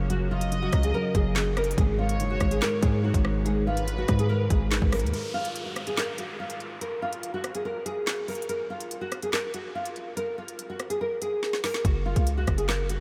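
A dreamy, reverb-soaked mix gives this tense, ominous drill excerpt a huge, hazy space, cut from a longer piece and moving at 143 BPM in 4/4 with a half-time feel. Up front, a dark, woody nylon-string guitar carries the melody, fingerpicked on old strings with a full-bodied classical depth and shaded by analog chorus and diffuse ambient delay. Beneath it, a mellow vintage grand piano with audible action noise and lush chorus accompanies the opening over Gb5 and Abm chords, while a distant, bowed violin section adds a soft, expressive second line with vibrato and ambient delay. A punchy, heavy 808-style bass with a sine body and a noise layer sits up front beside the electronic drill kit, whose hard-clipped kick, woody snare, crisp hats, rim clicks and handclaps drive the groove. At 5.1 seconds the music drops into a chordless break where an electronic downlifter sweeps through beneath the guitar and drums, then a drum fill at 11.4 seconds brings the 808 back in on Gb5 at 11.8 seconds.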